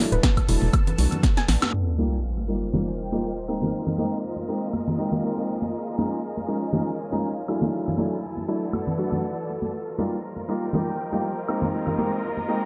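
A warbling, lo-fi pad and a felt-muted upright piano with audible action noise open this late-night deep house excerpt at 120 BPM, joined almost at once by a silky string machine, congas, a punchy overdriven drum machine and kick, a hollow organ-like FM bass and a soft round pluck melody. The kick, bass and pluck fall away during a drum fill that starts around 1.2 seconds, and at 1.7 seconds a sub drop hits as a distant, expressive bowed string section with vibrato and portamento enters over drifting sus chords, the pad and both string layers pumping with the beat. Dub echo on the piano and analog delay on the drums, pluck and congas feed an echo-heavy, filtered mix set in a chamber reverb with faint lossy artefacts.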